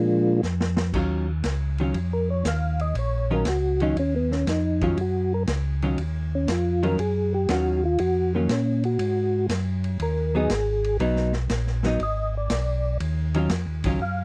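A soft, flute-like tonewheel organ with percussive attack, slow rotary speaker and chorus vibrato carries the melody through this smoky, late-night swung soul jazz organ trio excerpt, over a round, dark organ bass with key click, a clean, picked hollow-body jazz guitar entering at 0.9 seconds, and a vintage drum kit with dark cymbals and a punchy kick whose brief fill starts at 0.4 seconds, captured in a dry, close 1970s-style studio sound.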